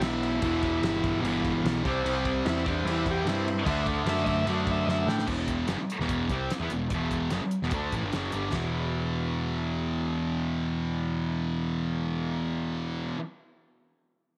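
Gritty and swaggering, this short excerpt from a longer garage rock piece in E minor drives along at 148 BPM in a straight 4/4. A thick, double-tracked fuzz guitar sits up front with a picked riff, while a growling picked electric bass adds overdriven weight underneath, both running nearly the full 13 seconds. A buzzy, vintage combo organ carries the melody over an Em, C and D progression before dropping out at 5.3 seconds, just as a drum fill closes the opening section. The cloth-damped drum kit sounds thuddy and saturated, with a fat snare, tight kick and dark, rolled-off cymbals, and it stops at 8.6 seconds as the harmony settles onto E5. Light reverb and a studio ambience frame the raw sound.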